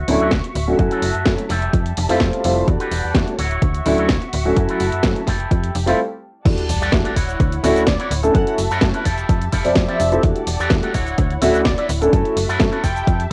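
A straight 4/4 groove at 127 BPM drives this nostalgic, sensual excerpt of filtered disco house, built on a punchy, tape-warm electronic kick and a house kit of cracking snare, hi-hat, shaker and crash cymbal, with the hats, cymbals and shaker pumping to the sidechain. Over a snappy FM slap-style bass with a metallic attack, a dark, mellow grand piano with audible action noise and a phaser sits up front, a bright, twangy envelope-filtered guitar plays a clean picked riff, and a veiled, con sordino string section holds distant, lush chords through Dmaj9, F#m7, Fmaj9 and Em11. These four parts pump under a low-pass filter, and the piano, guitar and strings carry cassette grit. After a brief stop at 6.0 seconds, the drop lands at 6.5 seconds with a very quiet sub drop, and at 7.9 seconds a fat, detuned analog synth brass melody with chorus and vibrato enters, all within a lightly reverberant home-cassette sound.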